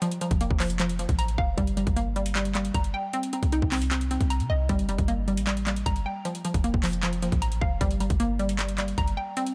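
Menacing and melancholic, this half-time trap hip hop cut at 154 BPM in G minor sets a hollow, detuned square-wave pluck playing up-front arpeggios with chorus and tape echo over a Fsus4–Gm–Cm7 progression, while an electronic trap kit of handclaps, metallic hi-hats and a hard-clipped kick punches through and a clean, boomy sine 808 bass enters at 0.3 seconds with deep, decaying notes, all set in a digital ambience.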